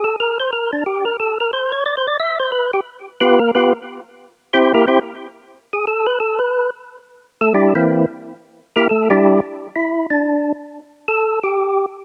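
A brisk swung pulse in four drives this short bluesy, soulful jazz excerpt, cut from a longer piece. A percussive tonewheel organ plays solo the whole way through, sitting up front with a fat, lightly overdriven tone, third-harmonic percussion and vibrato. It runs through a slow rotary speaker and a slapback echo, giving the line a sense of motion and a short repeat. The harmony starts unaccompanied, moves to G7 at 1.8 seconds and C7, then settles on a C9 at 7.2 seconds as the phrase repeats. The sound is dry and open, taken outdoors with little reverb and room sound absent.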